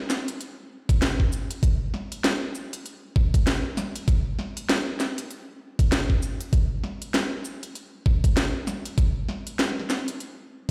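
Glitch hop at 98 BPM with a funky, playful 16th-note swing, this cut from a longer piece pairs an up-front drum and bass kit of cracking snare, crisp hats and shaker, running from 0.1 to 10.3 seconds, with a knocking, layered electronic kick entering at 0.9 seconds, both re-recorded in a small room and set within a moderate plate reverb and the stony echo of a big sound system in a bare room.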